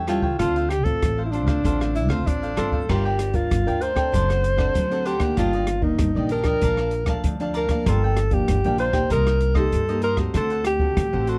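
A mellow alto saxophone sits up front with the melody in this nostalgic, lively samba and choro excerpt in G minor at 96 BPM, singing in a smooth jazz style with vibrato and scooped notes. Briefly, from 2.0 to 2.9 seconds, a breathy tenor saxophone adds a subtone second line with light vibrato. Underneath, a crisp, picked cavaquinho and a thumb-plucked classical nylon-string guitar fill out the harmony, moving through chords such as Gm7, Ebmaj7/G, Bbmaj7 and Cm7 before settling on D7. A woody, thumpy pizzicato upright bass anchors the low end, while an acoustic jazz kit in a small room supplies dark cymbals, hi-hat, rim clicks and a punchy kick. The dry, close recording has a 1970s studio character, and the passage is cut from a longer piece at 11.4 seconds.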